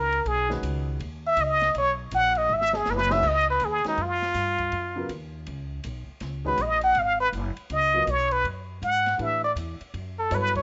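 A brisk swung 4/4 at 161 BPM drives this modal jazz fragment, cut from a longer piece, with an open, spiritual mood that settles into Db mixolydian from 3.2 s. A trumpet with plunger mute solos up front the whole way through, its brilliant, forceful wah-wah tone carrying vibrato and a close-miked punch, bathed in plate reverb. Beneath it, a woody upright bass with gut strings plucks a thumpy low line, while a dark baby grand piano joins at 0.5 s with mellow, intimate comping, its short sustain and audible action noise giving it a natural presence. The acoustic drum kit sits well back in a small room, with dark, smooth cymbals, a high-tuned snare and a punchy kick, and it plays a fill from 2.5 s to 3.2 s. Suspended harmonies hang open beneath the solo, moving from Gbsus4 to Db9sus4 and then to A9sus4 at 9.2 s, all captured in a rough home demo mix with light reverb and a dulled top end.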